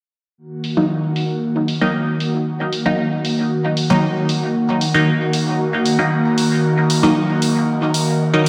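An airy, breathy pad sits up front, holding soft, detuned sustained chords through chorus and phaser from 0.5 seconds in this deep, meditative dub techno excerpt, resting on a single minor chord. Muted sawtooth chord stabs with a fast attack and short decay cut in at 0.8 seconds, sweeping through a filter and trailing dub echo, while dark, low-passed electronic hi-hats tick quietly underneath. The dreamy mix is soaked in a lush hall reverb that gives the whole piece a hazy digital ambience.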